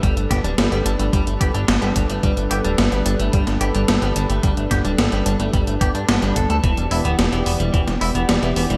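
An up-front chorused synth bass, glossy and pulse-width modulated with a fast filter pluck, anchors this nostalgic, uplifting synthwave excerpt at 109 BPM in G major, moving from Gadd9 to Em7 at 6.6 seconds. A gated 80s digital drum machine drives hi-hat and a gated-reverb snare beside a thumpy electronic kick that stops at 7.8 seconds, while a shimmering, slow-attack pulse-width pad pumps under sidechain. Two clean picked electric guitars with subtle chorus and delay fill out the bright 1980s-style digital production and lush hall reverb: one warm and in the background playing arpeggios, the other twangy, compressed and scooped playing a riff.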